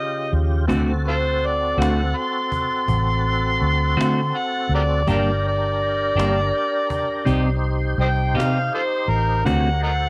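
Rolling in a straight 12/8 slow-blues lilt, this soulful, smoky excerpt features an amplified, gritty harmonica soloing up front with scooped notes, tongue slaps and light vibrato over full, lightly overdriven tonewheel organ chords turning through a slow rotary speaker, a dark, round, foam-muted electric bass, a snappy cajon with snares, and a clean, picked electric guitar colored by harmonic tremolo, set in a small room with light reverb as the chords move from Eb7 and D7 toward Gm and Cm.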